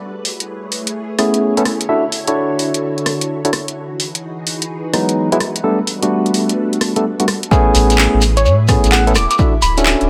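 Swung two-step UK garage at 128 BPM in A major, bouncy and sunny, opens on a silky, phased vintage string machine holding major-ninth chords under up-front garage drums of warm hats, handclaps and rim click, with a barky, lightly overdriven tine electric piano stabbing through dub echo from 1.2 s, until the drop at 7.5 s brings a punchy analog kick, a grainy shekere in the background and a deep, round, sidechain-pumped sub bass, joined at 8.4 s by a gentle FM lead with chorus and vibrato, the whole set in a moderate plate reverb in this excerpt cut from a longer piece.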